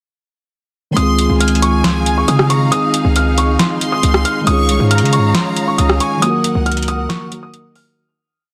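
Muted, felt-like synth keys with chorus open this triumphant yet dreamy half-time trap piece at 137 BPM, joined at 1.0 s by a soft felt-muted upright piano looping a mellow melody with audible action noise, a booming analog drum machine with a crisp snare, metallic hats and fast hi-hat rolls, a punchy 808-style bass with long sub notes and pitch slides, a lush string section sustaining chords, and a violin section's sparse counter-melody through digital delay that stops at 6.2 s as the hook fades out into a break from 7.1 s, all within light room ambience and a dense, heavily limited master.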